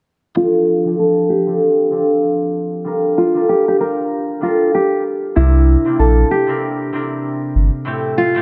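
A small, lightly reverberant room frames this gritty, reflective boom-bap hip-hop excerpt at 96 BPM in 4/4, swung on the sixteenths, with a filter sweep running through its single section. A ringing, mellow concert harp with a cassette-tape tint enters at 0.3 s as accompaniment, joined by a full-bodied, fingerpicked nylon-string guitar melody carrying digital delay, both up front over chords moving from F69 through Gm7 and C7 to Am7. A deep, round sine sub bass arrives at 5.4 s and sustains until 7.7 s.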